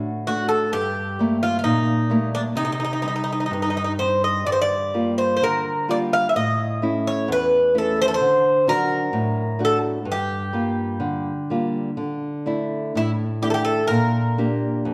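A Greek bouzouki with metallic, octave-doubled double strings picks a longing, passionate melody in G minor from the first moment, while a small-bodied nylon-string guitar with fresh strings fingerpicks the accompaniment beside it, both up front. This fado-style ballad moves at a rubato 64 BPM in 2/4, wrapped in the lush reverb of a recital hall, and at 12.0 seconds it turns toward a new section over a Dsus2 chord before this cut from a longer piece ends on Bb6.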